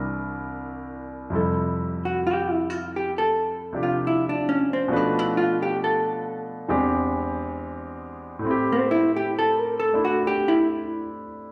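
Late-night and romantic, this jazz ballad excerpt moves in a slow swung 4/4, with a polished concert grand piano accompanying from the start, its deep bass and short sustain sitting up front. A dark, clean hollow-body electric guitar takes the melody as a fingered solo from about 2.1 seconds, over chords that pass from Fmaj9 through Bm7b5 and E7alt to Am7. The recital hall reverb lends a generous, church-like bloom to the pair.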